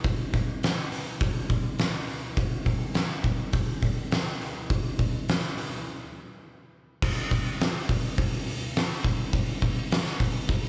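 An oversized, low-tuned acoustic drum kit opens the clip at 0.0 seconds, playing alone in a brooding, hypnotic metal groove at 103 BPM in a straight 4/4. The boomy kick and fat snare sit up front, joined by hi-hat and crash cymbal with a dark cast. The kit sounds saturated and gritty, captured in a bright stone room that pumps around the hits. A break arrives at 5.9 seconds, and a new section begins at 7.0 seconds and carries the drums to the end of this fragment of a longer piece. The recording is a live gig heard through the venue's PA, with light reverb and the ambience of the club around it.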